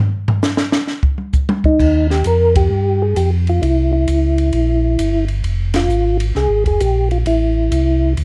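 A close, lightly reverberant small-room sound frames this swinging, soulful soul jazz organ trio excerpt at 132 BPM in 4/4. A compact cocktail drum kit with dark cymbals, a high-tuned snare and a punchy kick enters at 0.3 s. A soft, flute-like percussive tonewheel organ then carries the melody from 1.7 s through slow rotary speaker, chorus vibrato and plate reverb, while a round, mellow tonewheel organ holds the bass with its own slow rotary and chorus vibrato, and band accents punctuate chords moving from Ebadd9 through C7b9 and Fm to Am.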